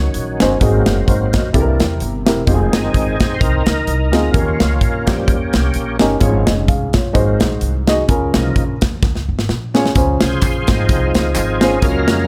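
A gritty, overdriven tonewheel organ takes the solo across this jubilant, hopeful slice of uptempo gospel, its thick tone turning through a slow rotary speaker and chorus vibrato as it spans from Eb3 to F5. The music moves at 128 BPM in 4/4 with a swung eighth-note feel in Db major, running through a progression that begins on Ebm7 and settles on Db6 near the end. A woody, thumpy upright bass with gut strings anchors the low end while an airy, polished studio drum kit sits up front, with a tight kick, a medium-tuned snare and hi-hat, and it plays a fill between 9.0 and 10.0 seconds. A dark, mellow upright piano, slightly detuned and close enough that its action noise is audible, adds intimate accompaniment. At 10.0 seconds a group handclap and tube shaker join in the background, and a light reverb gives the whole band a small-room ambience in this brief cut from a longer piece.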